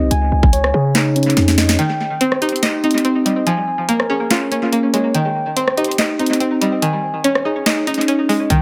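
Hard-hitting yet melancholic, this half-time trap excerpt at 143 BPM opens with mellow tine electric piano arpeggios through phaser and analog delay, a punchy sine-based 808 bass and a trap kit of hard-clipped kick, sharp snare, bright hats, handclaps and rim clicks re-recorded in a small room, then after a drum fill the bass drops out at 1.8 seconds for a long break where a twangy, warbling string-like resonator pluck with chorus joins over chords moving from Cm through Bbm7 and back to Cm before settling on Dbsus2, all in an echo-heavy mix with light reverb.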